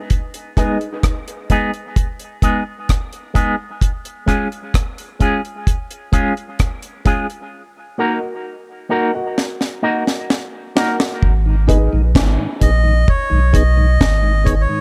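This excerpt of heavy, spacious dub reggae in G# dorian moves at 65 BPM in a straight 4/4, opening on a break where a deep, dry reggae drum kit, with its high-tuned snare, tight kick, rim clicks and hi-hat, sits up front. An electric guitar with an envelope filter soon supplies bright, twangy, clean picked accompaniment, its tremolo and dub echo colouring the chords as they move from G#m to C# and D#m. A dark upright piano adds woody, intimate stabs with audible action noise, first as a brief touch near the start and again from 8.0 s, while the drums play a fill from 9.4 s. At 11.2 s the music returns to G#m as a round, sine-like sub bass enters up front, joined by a mellow tonewheel organ with key click and a slow rotary speaker. A reedy, nasal melodica with dub echo carries the melody from 12.6 s, all set in a light reverb.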